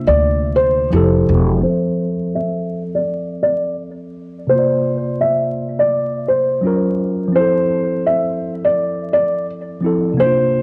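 Nostalgic and dreamy, this lo-fi hip hop excerpt in F major swings at 84 BPM as a soft, thick-felt upright piano sings the melody through a low-pass filter, cassette tape and analog delay over a worn, slightly out-of-tune tine electric piano, while a woody, dark pizzicato upright bass with tube saturation plays only until 1.6 s, after which a filter sweep colours the longer second section and its chords drift from Fmaj7 through C9sus4 to Gbmaj7 and back, framed by light reverb and the vinyl crackle of a home cassette recording.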